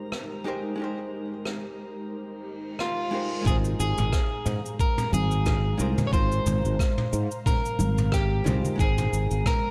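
A bright, growly fretless electric bass sits up front in this blissful sunset chillout excerpt, arriving at 3.5 seconds with a lush chorus alongside a gritty, thumpy electronic kick drum. Set at 90 BPM in 4/4 with a swung sixteenth-note feel in Ab major, the piece opens on a dark, clean, picked hollow-body archtop guitar with digital delay, cushioned by an ethereal, airy pad of detuned sawtooth and noise layers and a calm, glassy harmonics texture of drifting overtones in the background. A distant, roomy jazz brush kit adds cabasa, rim clicks and toms, and a short electronic reverse cymbal leads into the change. At 2.8 seconds a slightly broken-up electric guitar takes the picked melody, also with digital delay, and close, dry congas played with hard hands join in the background at 5.1 seconds. The harmony moves from a rootless Fm11 over Ab to Ab69 and settles on Abmaj9, all within a dark, warm production that carries light small-room ambience and a faint mains hum.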